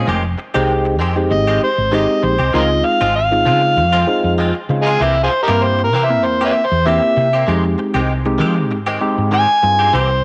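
Blues in F minor at 97 BPM, this mournful, soulful excerpt moves in 4/4 with a light sixteenth-note swing over a progression of Fm9, Dbmaj7 and C7 that returns to Fm9. A tine electric piano supplies clean accompaniment colored by a phaser, while a direct-recorded electric guitar adds bright, twangy, compressed stabs treated with ensemble chorus and tape echo. Underneath, a woody fretless bass sits up front with a dark, growly, round tone and an analog chorus. At 1.3 seconds an overdriven harmonica enters as the gritty, punchy lead, sung out with light vibrato, scooped notes and tongue slaps. A moderate echo chamber reverb with digital ambience gives the whole a roomy sheen, and the fragment is cut from a longer piece.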